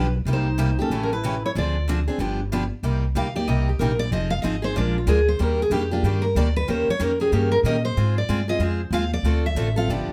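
Fiery and bittersweet, this fast acoustic string swing excerpt in C minor at 187 BPM opens with a mellow, soft-attack subtone clarinet second line that drops out at 1.9 seconds, while a bright, full-bodied steel-string guitar carries the melody and takes a solo from 2.8 seconds over a boxy parlour guitar accompaniment and a woody, thumpy gut-string upright bass, all in a moderate studio reverb.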